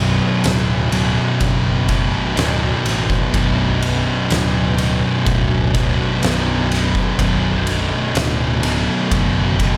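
A straight 4/4 stoner and doom metal groove, brooding and sludgy, rolls through this short cut from a longer piece as two thick fuzz guitars grind out a low riff, one dark and up front and the other tucked in the background, over an amped, overdriven fingered bass, while an oversized low-tuned drum kit with a fat snare, punchy kick and ride cymbal joins at 0.4 s in a bright, pumping stone room, and a very quiet, silky string machine warbles with ensemble chorus on sustained chords beneath them.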